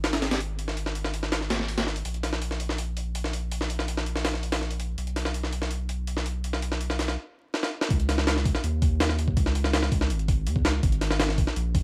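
A gritty, pitched-up breakbeat sampler-style drum kit sits up front with a thumpy kick, high-tuned snare and hi-hats, driving this nostalgic, atmospheric drum and bass and jungle excerpt at 164 BPM over a deep, thick, saturated sub bass, while the dry, vinyl-crackled mix pauses in a stop at 7.2 seconds before a drum fill leads into the drop at 7.9 seconds.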